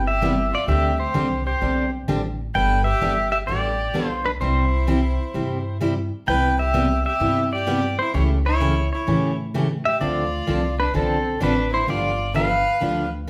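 A twangy pedal steel guitar carries the melody up front from the start, joined at once by a clear fiddle with light vibrato on a second line and a woody, growly upright bass. A bright, full-bodied picked acoustic guitar adds accompaniment from 0.2 seconds, finger squeaks and all, as the band plays live in one room with moderate studio reverb. This cheerful, down-home western swing cut moves at 129 BPM in C major with a lilting swing feel, running through a Cmaj7 to G7 progression.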